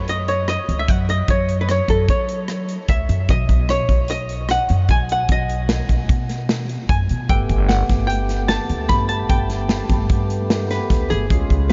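Driving along in 5/4 at 150 BPM, this brooding progressive instrumental excerpt sets a woody, thumpy pizzicato upright bass and a punchy drum kit of kick, medium-tuned snare, rim click and hi-hat under a dark, clean archtop guitar melody touched with analog delay, while a lightly overdriven tonewheel organ with slow rotary speaker joins at 7.3 seconds as the chords move from F#5 through B to Gadd9, all bathed in a huge, dreamy reverb that keeps the top end soft.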